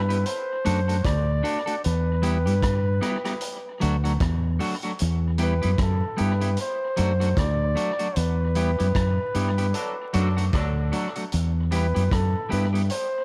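Echo-heavy and flecked with vinyl crackle, this short cut from a longer roots reggae piece sits in a small room with light reverb, its mood laid-back and serious over a gently swung 4/4 groove. A fingered electric bass, dark, round and punchy, stands up front, while a vintage acoustic drum kit with a punchy kick, rolled-off top and tape echo plays hi-hat, kick drum and rim click. A clean, picked electric guitar with a dusky tone and dub echo fills in the accompaniment as the harmony rocks between D and E minor. Over this, a mellow flugelhorn with a smooth top carries the melody through dub echo for the whole passage. A band accent arrives at 8.2 seconds, and a distant, roomy horn section with a warm sound and light vibrato adds a brief second line from 9.7 to 11.1 seconds.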